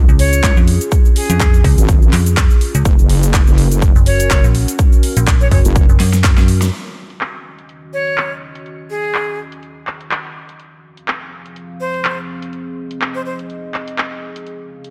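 A dark, moody analog pad with phaser and a heavy, detuned wobble bass open this gritty, aggressive bass house drop at 124 BPM in Eb dorian, quickly joined by a metallic FM bass, both basses saturated and pumping with the pad under sidechain, a punchy overdriven electronic kick, a big-room dance drum kit with a huge snare, claps, hi-hat and shaker, and a breathy, bright jazz flute with vibrato and delay over Db and Gb chords, until a drum fill at 6.0 seconds leads into a second section from 6.7 seconds where the kick and basses have dropped out and a filter sweep moves across the pad over Ebm7 and Fm.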